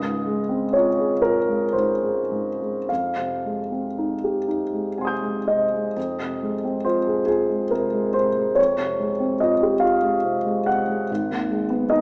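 In a slow, rubato 6/8 that drifts between 34 and 50 beats per minute on the dotted quarter, this impressionist classical piece for solo piano unfolds in F minor with a hazy, wistful mood. A clear grand piano, intimate and up front with its action noise audible, plays alone for the full 12.0 seconds, reaching from Ab1 in the bass to G6 at the top. The harmony drifts through rich extended chords, moving from Dbmaj7 to Fm9, then Fm7 and Dbmaj7#11/F before settling on Abm7 at 11.1 seconds. The passage presents its opening idea twice, with the second statement beginning at 6.0 seconds. A moderate recital hall reverb surrounds the natural piano tone, though the overall sound carries a small-speaker character, and the recording is a short cut from a longer piece.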